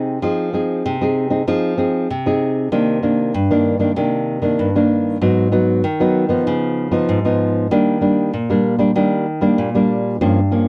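Lively yet bittersweet, this samba passage is cut from a longer piece and features a lone nylon-string guitar playing solo from start to finish. The guitar sits up front with a warm, thumb-plucked, classical tone, ranging from G2 up to Ab4 and touched with light reverb. It opens on an Fm7 chord before shifting at 2.7 seconds into a new section built on Cm9. From there the harmony moves through Abm7 and Db9 before settling on Ebmaj7 at 7.7 seconds, giving the phrase its wistful colour. The sound is dry and close, in the manner of a 1970s studio recording.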